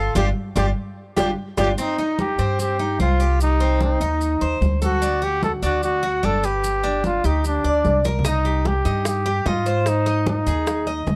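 Cuban son and guajira in C minor at 148 BPM, this sultry excerpt is carried by an up-front, breathy trumpet singing an intimate, whispered melody with vibrato over metallic, bright tres arpeggios and a woody, thumpy pizzicato upright bass on gut strings. Congas with a thin, saturated skin drive throughout beside grainy maracas tucked in the background, while tight, high-tuned bongos appear from 0.2 to 1.7 seconds and return at 8.2 seconds. A band accent and drum fill open the passage before the chords move through Cm, D7 and Ab, all captured in a dry, close 1970s-style studio sound.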